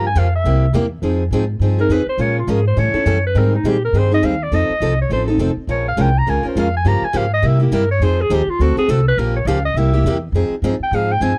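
A forceful, punchy clarinet leads this swinging, virtuosic excerpt of acoustic string swing in the jazz manouche style, playing a solo with light vibrato and a vintage, jazz-style voice that sits up front from the opening second. Set at a brisk 206 BPM in 4/4 with a swung eighth-note feel in F minor, the piece moves through changes such as Fm7, Bbm7, Abmaj9, Gm7b5 and C7 before settling on Fm9 at 10.3 seconds. A bright, picked steel-string acoustic guitar supplies the accompaniment, its concert-style tone also close in the mix. Beneath them, a woody, thumpy pizzicato upright bass anchors the low end, sitting a touch louder than the other parts. The sound is dry and close, a small-room recording in a 1970s studio manner, cut from a longer performance and running about 11.4 seconds.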